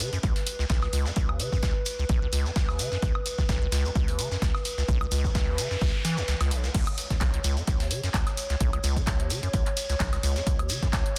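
A warbling, detuned pad and a squelchy square-wave acid bass carry this trippy, hypnotic acid house excerpt at 129 BPM in 4/4, with a light 16th-note swing over a Bsus2 chord. The pad holds dark, nostalgic lo-fi chords with chorus, built-in reverb and sidechain pumping, while the up-front bass riff sounds hollow and resonant, with a filter sweep, fast attack, tube saturation and tape echo. From the outset, a tape-tinged drum machine plays crash, handclaps, hi-hat and woodblock, and a gritty, compressed sampler-style breakbeat kit sits in the background with filtered hats and snare. A punchy analog kick comes in at 0.2 seconds. A grainy, mellow shekere adds acoustic texture from a distant large room throughout. An electronic noise sweep drifts through the background at 5.3 seconds, and the kick briefly drops out at 6.3 seconds before returning, all inside a dense, heavily limited modern master with light reverb.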